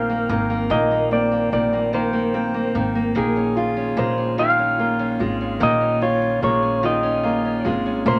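A moderate club reverb gives this short excerpt a cozy, intimate sense of space. It's a romantic, swaying pop ballad in 6/8 at 49 BPM, counted in dotted quarters with a straight feel, and the harmony moves from Ab to Dbadd9 at 3.2 seconds. Out front, a clean, compressed lap steel guitar carries the melody between Ab4 and F5, its dark, fingered slide tone shaped by volume swells. Beneath it, a clear upright piano with a woody character plays the accompaniment. A fingerpicked dreadnought acoustic guitar with fresh strings adds full-bodied arpeggios. Lowest in the mix, a pizzicato upright bass with steel strings anchors the bottom between Ab1 and Bb1, all four parts playing throughout the 8.2 seconds.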